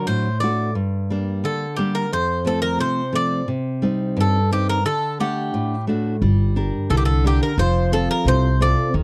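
A straight two-beat pulse in 2/4 carries this short, brooding stretch of Greek folk music, cut from a longer piece. The bouzouki carries the melody in a compact middle register, its picked double courses giving a metallic ring, with some strings doubled at the octave. Beneath it, a classical nylon-string guitar fingerpicks a full-bodied accompaniment across a broad range, with the occasional finger squeak audible. At 6.2 seconds the opening phrase begins again, and a pizzicato upright bass with steel strings enters, adding a woody low end. The harmony moves through D, Gm, F and Cm, and all three instruments sit up front in a dry, close, 1970s-style studio sound with little reverb.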